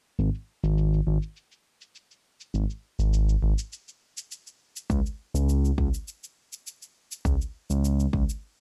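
Organic downtempo at 102 BPM in a warm, meditative mood, this short cut from a longer piece rests on a smooth, gliding synth bass with sawtooth and wave-folded edges, vibrato, portamento, tube saturation and sidechain pumping, set up front over a low-pass-filtered electronic shaker, with a deep, layered electronic kick joining at 4.9 seconds in a dry room before everything stops at 8.4 seconds.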